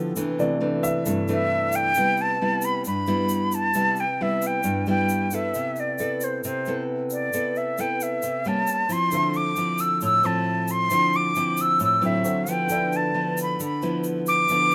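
A straight 4/4 bossa nova pulse at 134 BPM in C major carries this relaxed, sophisticated excerpt, with fingerpicked nylon-string guitar up front (its fresh strings and finger squeaks audible) and a grainy, bright tube shaker entering at 0.2 seconds, while an airy, expressive jazz flute with soft attack and vibrato takes the melody from 1.3 seconds over chords such as Cmaj7, A7b9 and Dm9, and an intimate grand piano with deep bass, long sustain and audible action noise opens the passage and returns at 9.1 seconds, set in light reverb.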